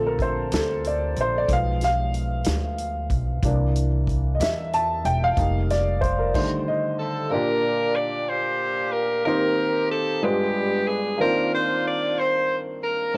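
A slightly detuned upright piano with audible action noise leads this jubilant, hopeful slow gospel cut in 6/8 at 62 BPM, joined by a growly, woody pizzicato upright bass and a natural country drum kit with a punchy kick until a stop at 6.3 seconds, after which a mellow, vintage saxophone section with soft attack and vibrato carries the melody from 7.0 seconds, with cassette-tape coloring on the piano, drums and horns in a small, intimate room.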